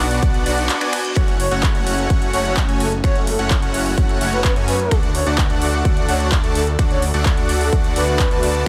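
A straight 4/4 pulse at 128 BPM drives this euphoric, emotional festival progressive house excerpt, where a punchy, overdriven electronic kick and a layered kit of finger snaps, handclaps and metallic hi-hats back huge, bright supersaw chords carrying cassette-tape colour, sidechain pumping and digital delay over a thick, detuned saw bass with chorus, while a very quiet, airy pad holds sustained chords through Bm, F#m and D, a faint reverse cymbal sounds at 0.6 seconds, and a breathy, flute-like synth lead with vibrato enters in the background at 1.4 seconds.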